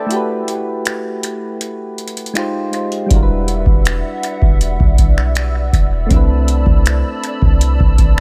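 A booming analog drum machine with a deep kick, metallic hats and finger snaps sits up front in this moody, sensual contemporary R&B fragment, opening over soft, round electric-piano-like synth keys with chorus and analog delay before a dark, clean 808-style bass and a hollow, flute-like, warbling pad with ensemble chorus and sidechain pumping enter at 3.1 seconds, all in a dry, echo-heavy mix moving through lush ninth and thirteenth chords.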